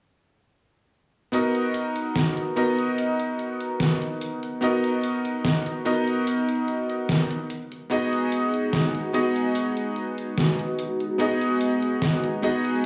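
A bright, clangy electric grand piano carries the accompaniment in this hazy, woozy vaporwave excerpt at 73 BPM, sitting up front with subtle chorus, 12-bit sampler grit and analog delay as it moves from Bmaj7 to G#m7 at 7.5 seconds. A detuned 8-bit drum machine plays hi-hat and a medium-tuned snare from 1.3 seconds, and at 5.3 seconds a warbling, nostalgic tape-like pad enters in the background with a filter sweep, phaser and chorus. A plate reverb and cassette tape character give the whole piece a lo-fi softness.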